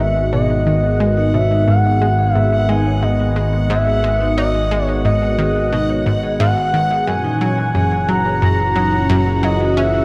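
Bathed in a lush, wet hall reverb, this hypnotic, expansive stretch of sequencer-driven ambient space music sets a dark, expressive synth lead up front over a swirling phased analog pad, a round, bright analog pluck riff, a fat, thick analog bass, a bubbling stepped-filter texture and soft-mallet vibraphone arpeggios ringing in the background, with the harmony shifting from G#m7 to F#7 at 7.1 seconds.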